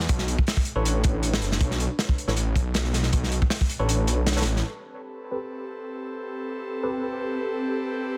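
Drum and bass with a jungle edge at 158 BPM in A minor, this nostalgic yet frenetic clip opens on a crunchy, gritty breakbeat kit and a thick, beating detuned saw bass under tube saturation over Bm9, with a clean tine electric piano entering on stabs at 0.8 seconds through phaser, low-pass filter and dub echo, until the kick drops out at 3.9 seconds and, at 4.6 seconds, drums and bass stop as an airy, breathy chorused pad holds Am9 while the piano's filter sweeps in a dense, heavily limited mix with light small-room reverb.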